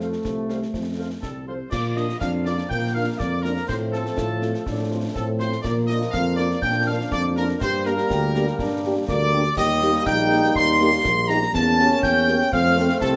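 A mellow tuba sits up front with a roomy tone, anchoring this spirited, rousing military-style march for wind band in Bb major, taken at 122 BPM in a straight 2/4. A clear trumpet section carries the melody with light vibrato. A vintage-sounding euphonium and a background woodwind section with a soft attack play supporting lines. A pure, tongued piccolo adds a high, expressive line from 1.2 s. Dark French horns provide accompaniment, and smooth-topped trombones hold sustained chords in the background. A close, dry kit of concert snare, concert bass drum and clash cymbals with dark cymbals drives the pulse, all in a moderate large studio reverb. The harmony opens on F, moves to Bb and then through Gm and Eb to an Edim7 before settling on F at 12.5 s.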